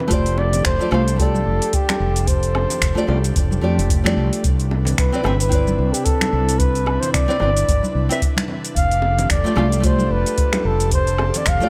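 Relaxed and smooth, this sunset chillout excerpt moves at 111 BPM in a swung 4/4, in F lydian, with a dark, breathy flugelhorn carrying the melody with vibrato and scooped notes, close and intimate under delay and shimmer reverb, while a fingerpicked nylon-string guitar adds full-bodied accompaniment through similar delay and shimmer. Beneath them, a round, up-front fretless electric bass and a dry, deep electronic kick anchor the groove. A filtered deep house kit of finger snaps, metallic hi-hats, shaker and woodblock joins them, while vintage congas and bongos played with soft hands and an airy, chorused pad sit in the background over the chords F69 and Cmaj9 in a small, lightly reverberant room.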